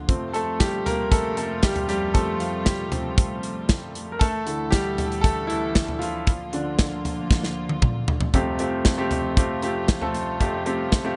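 A straight, steady 4/4 groove from a modern acoustic drum kit, with tight kick, a medium-tuned snare, hi-hat and toms, drives this hopeful, piano-driven pop excerpt cut from a longer piece. Up front, a clear concert grand piano carries the accompaniment and takes a featured solo through the first 8.3 seconds, its polished, intimate tone rich with deep bass and audible action noise. Behind it, a distant, dark string section holds sustained bowed chords with light vibrato and a reedy, gut-string, period-style sound. The harmony moves from Fadd9 through Dsus2 and Bb/D. A drum fill from 7.3 to 8.3 seconds ushers in a new section that returns to Fadd9. Light studio reverb and a soft top end give the recording a gentle, warm sheen.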